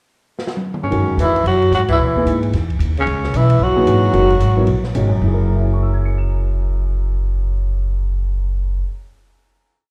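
This short, complete piece sounds like a live gig heard through a club's PA, with a light reverb hanging around the band. It is fast modal jazz at 224 BPM in F# mixolydian, swinging in 4/4 with a searching, spiritual mood. The open drum kit opens with a fill at 0.4 seconds, then rides with sticks on dark cymbals over a punchy kick and a medium-tuned snare. The upright bass walks up front with a woody pizzicato tone, while the grand piano comps in syncopated quartal voicings with a deep low end. A growling tenor saxophone carries the melody in short call phrases: raspy, gritty subtone with vibrato and scooped notes, touched by slapback echo. A second, breathy tenor doubles it an octave down, close-miked and clear with the same echo. A band accent lands at 1.9 seconds, and a final F#9 chord from 5.2 seconds rings out to the end.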